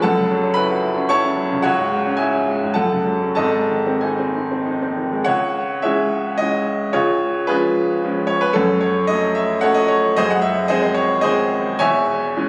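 In a 3/4 time with a free, rubato pulse that drifts between 92 and 116 BPM, this romantic character piece for solo piano unfolds in C# minor, tuned slightly sharp to A4 = 441 Hz. The mood is bittersweet and passionate, carried by a bright grand piano placed up front, whose brilliant, open tone spans from a deep E1 to C#6. The opening phrase moves from F#m7 through C#m and F#m to a G# chord, and at 5.3 seconds a new passage returns to C#m before moving through C#7, F#m and G#7/F#, settling on C#m/E as the clip breaks off at 12.5 seconds, cut from a longer work. The piano sits in a wet recital-hall reverb with a 1.7-second decay, layered with a club-style reverb and compression. The recording was captured on a phone within the room.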